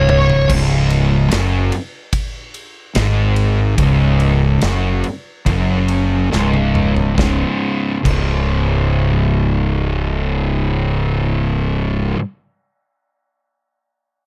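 This dry, close recording has a 1970s studio character, with little reverb around the instruments. It is a short cut from a longer piece of stoner and doom metal at 71 BPM in 4/4, ominous and hypnotic in mood, tuned a little below standard pitch, with the music slowing down from 0.5 to 7.2 seconds. A double-tracked, up-front fuzz guitar carries the distorted, picked riff from C#2 to C#3 and runs nearly to the end at 12.2 seconds, supported below by a growly, overdriven fingered electric bass moving between C#1 and G#1. A fuzz lead guitar with wah, distortion and slapback echo sounds only a brief C#5 in the opening half second. The big acoustic rock drum kit, with a punchy kick, medium-tuned snare, ride, crash and toms, opens with a fill, plays another fill from 6.3 to 7.2 seconds, and drops out at 8.3 seconds, leaving guitar and bass to carry the closing passage.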